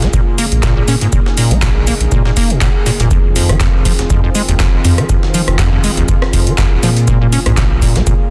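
A swung sixteenth-note groove at 121 BPM in 4/4 drives this raw, gritty acid house fragment in F minor. An electronic kick drum, deep and re-recorded in a large room, anchors the beat from 0.1 s, while a booming analog drum machine adds handclaps, rim clicks and metallic hi-hats. Further back, a breakbeat sampler-style kit layers pitched-up, compressed hi-hat, shaker and a medium-tuned snare, with high-pass filtering and soft clipping giving it a tape-grained edge. A squelchy, resonant square-wave acid bass plays the riff with a fast, decaying filter pluck, colored by analog chorus, cassette tape character, dub echo and sidechain pumping. Beneath it, a round, dark analog bass sustains the low end, and a smooth pad holds chorused chords through Bbm7 and Fm7, both pumping against the kick. Light digital ambience surrounds a dense, heavily limited master.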